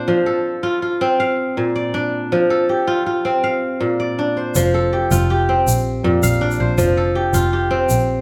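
Heard in a moderate recital-hall reverb, this hypnotic fragment of West African string and xylophone music in F major moves at 107 BPM in a straight 12/8, with a bright, fingerpicked kora ringing out up-front arpeggios alone until a smooth, bowed double bass with vibrato and a grainy tube shaker join at 4.6 s over chords alternating between F and Bb.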